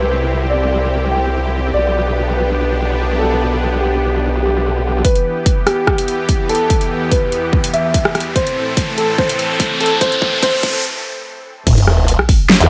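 Heavy wobble dubstep in E minor at 145 BPM, felt in half-time, this chaotic, heavy excerpt from a longer piece moves from a brooding opening into a build-up and a short drop. A dark, mellow concert grand piano carries the melody through a dub echo, while a lush supersaw pad holds sustained chords that pump against the sidechain beneath a chord movement from C to G/B and then Em and Am. A detuned, formant-swept wobble bass with chorus and overdrive growls up front in the opening seconds, then drops out until it returns at the drop. At 5.0 seconds a big-room dance kit with a huge snare and metallic hats enters alongside a punchy electronic kick, driving a build-up with a filter sweep, a riser and a drum fill before a brief break. At 11.7 seconds the drop lands with an impact and a sub drop as the chords fall away, the wobble bass surging back louder in its final moment, all set in light reverb and digital ambience.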